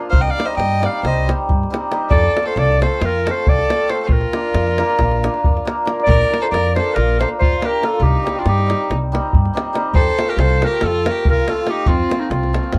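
A distant, roomy clarinet leads this wild, exuberant Balkan wedding-band excerpt in a classical style, carrying the melody up front over a 9/8 groove at 276 BPM in eighths that keeps speeding up. Beneath it, an intense, airy-bowed violin with vibrato adds a close second line, a shimmering, ringing hammered dulcimer supplies accompaniment, and a woody pizzicato upright bass and a tight, dry davul drive the bass and percussion. The Bb major theme moves through Cm, F and Bb and repeats from 6.1 seconds, all set in light reverb with a dark, warm production.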